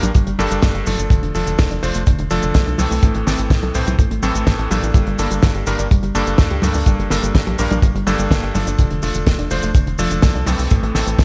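A bright 1980s-style digital production with light reverb frames this short cut from a longer italo disco piece, nostalgic and danceable at 125 BPM in a straight 4/4, set in G dorian with chords moving from Gmadd9 through Dm and Am. A dry, tight kick sits up front from 0.1 s, its top rolled off, while a damped 70s acoustic kit adds a fat snare, hi-hat, toms and cabasa. A punchy sequencer bass drives underneath, its saturated sawtooth and square tones shaped by a filter pluck with a fast attack and a decaying tail. A bright, clangy electric grand piano cuts through with short-sustain stabs treated with digital delay. In the background, a soft, round pluck of detuned triangle, sine and sawtooth layers with a sub octave spins dark arpeggios, thickened by chorus, a moving notch filter and digital delay.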